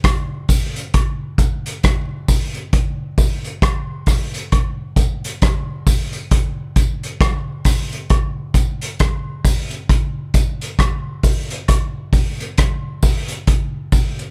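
An up-front vintage acoustic drum kit leads this serious, meditative reggae passage at 67 BPM in 4/4 with a 59% swing on the sixteenths. Its punchy kick, hi-hat and rim click sit in a small, pumping room with a rolled-off top. Woodblock and tambourine, along with maracas and a group handclap, stay in the background in a live room from the start until 14.2 seconds, and the overall sound carries little reverb.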